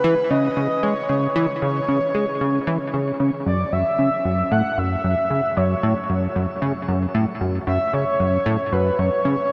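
A vast, wet wash of ambient reverb surrounds this hypnotic, mysterious ambient fragment at 114 BPM in 4/4, cut from a longer piece, where a breathy, flute-like synth lead with a noise layer and vibrato sings a soft, sustained melody between B4 and F#5 over a punchy, funky sawtooth bass riff with a filter sweep, both parts up front and dressed in analog chorus, shimmer reverb and delay, as the harmony moves from C# minor to F#m7 at 3.5 seconds.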